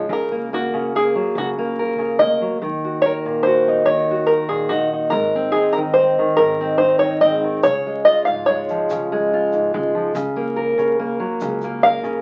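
A plunky, twangy open-back banjo carries the melody up front in this pastoral, peaceful acoustic folk piece in 6/8, fingerpicked over a dark, fingerpicked steel-string guitar and a woody upright bass sitting in the background. A grainy egg shaker joins at 7.6 seconds as the chords move through Gb, Ebm, Ab and Db. The whole short section is wrapped in a wet small-room reverb and the crackle of a very old 78 rpm record.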